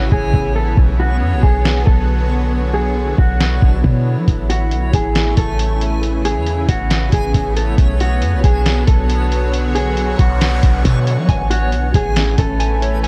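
A digital ambience surrounds this blissful, dreamy slice of atmospheric cloud-rap, cut from a longer piece and moving in a half-time feel. A shimmering, ethereal pad with a warbling, detuned vintage character and an octave-up sparkle holds sustained chords under a mellow, dark electric guitar melody, filtered and trailed by delay. Beneath them a deep, boomy 808-style bass sits up front with a clean sine tone, and a reversed, granular texture hovers in the background. The lo-fi sampler-style drum kit, pitched down, muffled and tape-warm, with a thumpy kick and medium-tuned snare, joins almost at once, though the opening stretch to 4.3 seconds plays as a break. A faint electronic noise sweep passes through from 10.2 seconds, and from 11.3 seconds the guitar turns to fingered arpeggios coloured by analog chorus as the harmony settles back on Amaj7.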